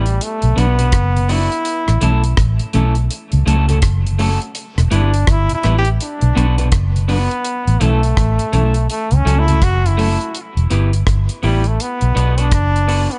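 In a small room with a dark, rolled-off top end, this meditative, serious slice of roots reggae sets a brilliant, present trombone soloing with light vibrato and tape echo through the first 10.3 seconds over a round, punchy, foam-muted bass up front, a deep, dry, tight-kicked drum kit of hi-hat, kick and rim click, a slightly broken-up lo-fi electric guitar with its own echo, and a very quiet, flute-like rotary organ that drops out at 10.1 seconds.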